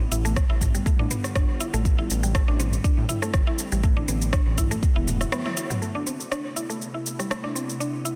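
A dense, heavily limited mix with light reverb frames this hypnotic, earthy afro house excerpt in A minor at 121 BPM, its 16ths lightly swung. A deep, up-front electronic kick and a dark, rumbling detuned saw bass drive the opening, and the bass drops out at 5.3 s on a band accent and drum fill. Meanwhile a layered deep house kit of cabasa, rim click and toms plays on alongside woody, round, mallet-like pluck arpeggios carrying chorus and delay, and in the background an ethereal, airy pad sustains slow-attack chords from G7/A through Cadd9/A and Bm7/A to Amadd9, pumping to the sidechain like the bass and pluck.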